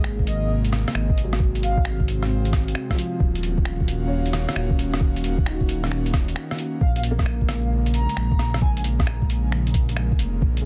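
A rainy, wistful future garage fragment opens with a dark, detuned saw bass rumbling up front beneath an airy chorused pad, a woody upright piano with audible action noise set in the background, and a muffled, pitched-down sampler-style kit of finger snaps, hi-hat and rim click, with the bass, pad and piano pumping against the sidechain. A thumpy electronic kick joins at 0.2 seconds, and a breathy, flute-like synth lead with vibrato and tape echo floats in at 0.3 seconds and again at 6.8 seconds after a short break, as the swung groove moves from Abadd9 to Ebm7 and on to Bbm7. The dense, heavily limited master carries a bed of vinyl crackle.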